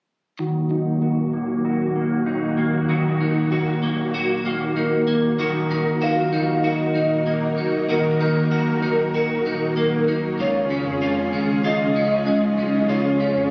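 Heard through a phone in a reverberant club with a moderate plate reverb, this hazy, haunting dream pop fragment opens under a filter sweep, with twangy, slightly broken-up electric guitar arpeggios trailing delay and a warbling, vintage string-machine cello pad of sustained chords both up front, joined at 4.8 seconds by a dark, round, octave-layered synth lead melody with phaser and vibrato and at 5.4 seconds by a deep sine sub bass sitting in the background.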